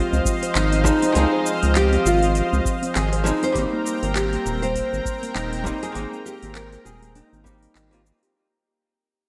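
Riding a 100 BPM groove in 4/4 with a 57% swing on the sixteenths, this relaxed, sunny sunset chillout piece is cut from a longer track and fades out from 2.0 seconds onward. An overdriven, dry electronic kick sits under a produced R&B kit of handclaps, metallic hi-hats and shaker, while a round, up-front analog bass built from square and sine waves holds the low end. A fingerpicked nylon-string guitar carries the melody, with audible finger squeaks and a diffuse ambient delay trailing its notes. A dark, clean, miked and amplified hollow-body archtop guitar supplies picked, compressed accompaniment, and a thick, warbling sawtooth unison pad with chorus sustains Dbmaj9, moving to Abmaj9 at 3.6 seconds. A shimmering steel pan struck with soft rubber sticks plays arpeggios in the background through tape echo, and the whole mix is soaked in a lush hall reverb that gives it a dreamy glow.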